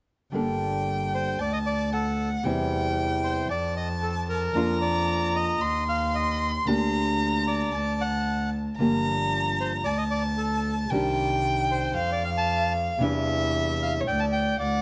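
Tango in G minor at 114 BPM with a rubato feel, tense and melancholic, this passage cut from a longer piece sets a small, fingerpicked nylon-string guitar beneath an up-front, biting, earthy bowed double bass with light vibrato, while a bowed violin with soft attack, portamento and tape echo sings a warm, expressive second line, joined at 1.1 seconds by a reedy, bright bandoneon carrying the melody in a lightly reverberant room.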